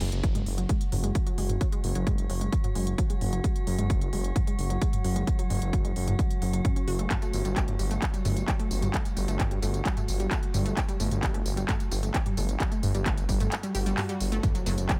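Industrial and relentless, this driving peak-time techno excerpt at 131 BPM in straight 4/4 pairs an overdriven, heavy kick up front with a layered electronic kit of smooth hats, handclaps, tambourine and toms, while a thick, beating detuned saw bass pumps underneath, a punchy unison pluck riff with delay rides a filter sweep, and an eerie metallic FM drone with chorus hovers nearly throughout; the kick drops out at 13.5 seconds, letting a very quiet swell build toward an impact at 14.4 seconds in a dry mix.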